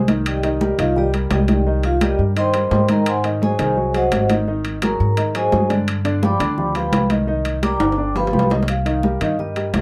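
Sophisticated and driving, this brisk Afro-Cuban jazz excerpt in C minor at 171 BPM features a dark, smooth vibraphone with medium hard mallets and motor vibrato soloing up front from 0.3 seconds over a polished concert grand piano, a woody pizzicato upright bass, background congas with soft hands and metal-shelled timbales, moving through Cm9, Ab7 and G7 before a drum fill at 7.8 seconds leads into a new section at 8.7 seconds, all heard through close, detailed microphones in a moderate club reverb.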